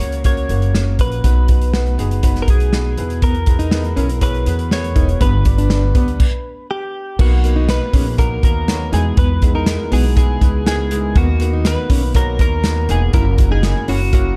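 Over a straight, steady pulse from an airy, polished country drum kit with a punchy kick and up-front woody pizzicato upright bass, this hopeful, uplifting piano-driven pop fragment sets a clean, compressed, direct-recorded electric guitar melody with analog chorus against a worn, slightly detuned, boxy upright piano, while a full-bodied fingerpicked jumbo acoustic guitar riff joins in the background at 3.2 s, and after a brief stop from 6.2 to 7.2 s the band moves into a second section of major-seventh chords, closing on F#7, inside a dark small-room sound.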